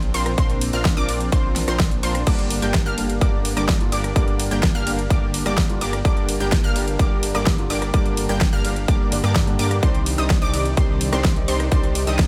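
Opening on a lush, slow-attack unison pad, a thick detuned saw bass with chorus and a big-room drum kit with a huge snare, this euphoric, anthemic festival progressive house excerpt at 127 BPM in G minor quickly adds a bright, ring-modulated unison pluck playing high arpeggios, an airy supersaw stab riff with tape echo, and a punchy electronic kick at 0.4 s, both drum parts overdriven, while a concert grand piano with deep bass joins softly in the background at 2.3 s, and the bass, pluck, stab and piano pump with sidechain over chords moving from Bbadd9 to Gm and then to Cmadd9 at 9.8 s in a fairly dry mix.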